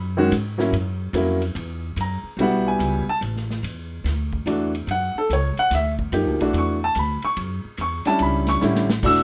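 A growly pizzicato upright bass opens this cool, searching swung modal jazz fragment, joined at once by a clear, woody upright piano up front and a quieter vintage kit with dark cymbals, a punchy kick and a pumping small-room sound, all in light reverb, before a drum fill at 8.6 seconds near the end of the cut.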